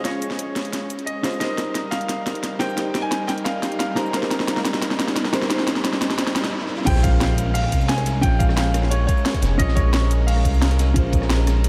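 A straight 4/4 pulse at 176 BPM drives this lush, dreamy liquid drum and bass passage in Bb dorian, where an overdriven, up-front drum and bass kit with a cracking snare and bright hats plays a fill beneath a brilliant grand piano melody with delay, a dark, clean hollow-body jazz guitar accompaniment with delay, a warbling vintage analog pad with chorus and sidechain pumping, and a smooth, gliding sawtooth-and-square synth bass up front, all moving from Bbm7 to F9sus4 inside a huge ambient reverb, until a very quiet riser and impact entering at 4.5 s leads into the drop at 6.9 s. There a knocking, overdriven electronic kick joins, and a gritty, saturated breakbeat kit with dark cymbals and a high-tuned snare enters in the background as the harmony returns to Bbm7.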